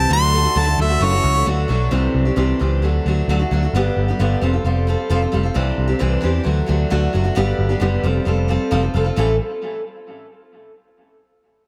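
Folk rock and heartland rock, nostalgic and jangly, cut from a longer piece. It opens with a bright, close-miked harmonica solo with light vibrato that plays only until 1.5 s, over a picked steel-string acoustic guitar with audible finger squeak and a growly, punchy electric bass. Harmonica and guitar both carry analog delay, and the guitar and bass continue until 9.4 s through chords moving among D, Cadd9, G and Fadd9 before landing on A5, all set in moderate spring reverb in an echo-heavy mix.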